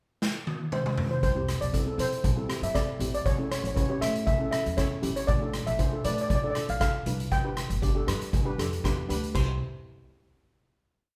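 A sunny, carefree calypso at 118 BPM in C major, this short complete piece opens with a drum fill from a street-band kit before the lead steel pan enters at 0.7 seconds, its dark, smooth, shimmering tone from medium rubber sticks carrying a free-roaming melody. A woody, thumpy pizzicato upright bass on steel strings joins at 1.2 seconds with a syncopated figure, and from 1.4 seconds a mellow double-seconds pan struck with soft rubber sticks adds boxy, rhythmic triad chords over C, A, Dm/A and G. The kit sits up front in a calypso groove with a boomy kick, a medium-tuned snare and shadowy cymbals in an airy, polished big-room sound, and the band plays live together in a large studio reverb before settling on a final C chord.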